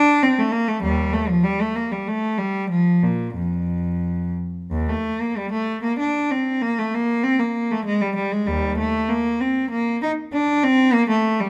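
A single bowed cello, rich and focused with a smooth top and vibrato, sits up front in a moderate large-studio reverb and plays alone through this radiant, flowing baroque-style suite movement in B-flat major, moving with rubato in 3/4 around 97 BPM across a range of Eb2 to Eb4 and shifting into a new section at 4.7 seconds, the passage cut from a longer piece.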